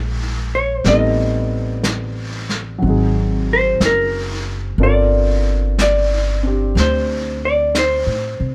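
Cut from a longer piece, this late-night, intimate jazz ballad opens on a grand piano comping softly beneath a woody, thumpy pizzicato upright bass that sits up front. At 0.6 seconds a dark, clean hollow-body electric guitar enters with a picked melody in a narrow upper-middle range, sitting forward and carrying the tune. A vintage brush kit follows at 0.8 seconds, its brushed snare and hi-hat kept low in a small-room sound with a rolled-off top. The slow 61 BPM pulse in 4/4 carries a gentle swing on the eighth notes, while the harmony moves through rich minor, half-diminished and dominant chords, from Ebm11 to Gm11. Close, detailed miking and very little reverb give the ensemble an unadorned, near-at-hand presence.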